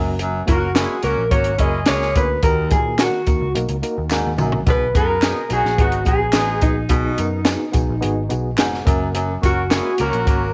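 Uptempo 1960s-style soul with an uplifting glow, cut from a longer piece, where a slightly broken-up, lo-fi electric guitar through a small old amp carries the phaser-tinged melody up front, a clear horn section with light vibrato adds a loose second line, a distant, subtoned baritone saxophone plays a riff until 9.4 seconds, a reedy electric piano with fast tremolo opens with a fill and comps beneath, a dark, round, foam-muted electric bass with tube saturation anchors the low end, and a dry, punchy compact cocktail drum kit with a high-tuned snare plays a fill at 4.1 seconds while tambourine and handclaps sit quietly in the background, all in light reverb.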